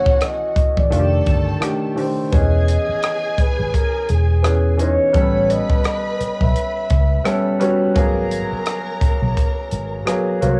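A breathy, whispered flugelhorn carries the melody with light vibrato and scooped notes in this lush 1970s-style soul fragment at 85 BPM with a swung 16th feel, backed by a bowed studio string section with tape echo, a clear, worn baby grand piano, a dark, round foam-muted electric bass with tube saturation, and a compact cocktail kit of punchy kick, hi-hat and rim click, all heard through the small-room ambience of a home cassette recording.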